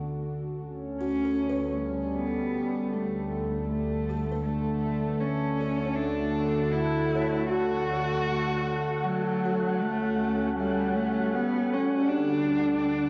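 Warm and weightless, this ambient excerpt in 3/4 sets a smooth, chorused analog pad up front over a lush, bowed double bass section that holds a low D and fades out, while a dark, intimate sul tasto cello carries a vibrato melody fading in from 1.0 seconds, a buzzing, woody kalimba plays soft arpeggios in the background as it fades away, and a breathy, wind-like tuned noise texture joins at 6.2 seconds, with tape echo on the cello and kalimba and wet spring reverb over the whole home cassette recording.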